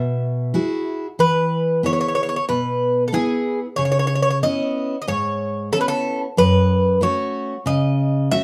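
A Greek bouzouki carries the melody up front, its metallic double strings and some octave-doubled courses ringing through a plate reverb, while a full-bodied jumbo steel-string acoustic guitar, also picked and close in the mix, supplies the accompaniment beneath it. This relaxed Greek folk excerpt moves at 93 BPM in a straight 4/4 in E major, shifting from an opening Eadd9 into E at 1.2 seconds, then through C#m7 and F#m. A moderate studio room and a dark, warm production cushion the two bright, picked strings throughout this short fragment of a longer piece.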